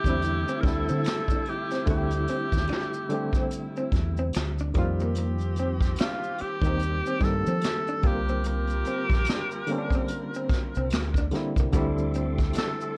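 A breathy, whispered tenor saxophone carries the melody up front, with vibrato, scooped notes and a slapback echo, in this soulful, introspective neo-soul R&B piece with a swung 16th-note feel. Around it sit a barky, lightly overdriven electric piano with fast tremolo, clear stabs from a saxophone section, a lo-fi, slightly broken-up electric guitar with tremolo on a second line, a round, dark fingered bass, a roomy brushed drum kit with a punchy kick and rolled-off top, and faint, saturated maracas and finger snaps. A clean tonewheel organ with key click and slow rotary speaker slips in at 11.7 seconds, and the whole mix has light reverb and the worn, warbling pitch drift of old cassette tape.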